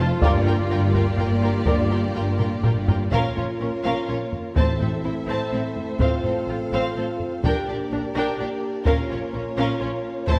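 Moving in a steady 3/4 at 126 BPM with a straight feel, this dark, epic orchestral film-score passage, cut from a longer piece, is driven by a taiko ensemble struck with heavy sticks in a small room, joined at 0.2 s and including a drum fill from 2.4 to 3.1 s. A distant, lush symphonic violin section carries the melody between A4 and A5 with smooth, even vibrato, while a second violin section adds an expressive second line in the background and violas supply accompaniment with vibrato and portamento. A rich studio string section holds sustained chords, and mellow French horns with light vibrato fill in sustained harmony from 0.2 s. Beneath them, focused, close cellos and woody double basses anchor the low end, and a dark trumpet section fires brief stabs on D5 only from 0.2 to 1.8 s. Round, calf-headed timpani played with soft mallets sound A2 between 4.6 and 5.2 s, as the harmony moves from Gm7 through Bbm, Am, F/A and Gm/Bb before returning to Bbm, all bathed in a moderate scoring-stage reverb.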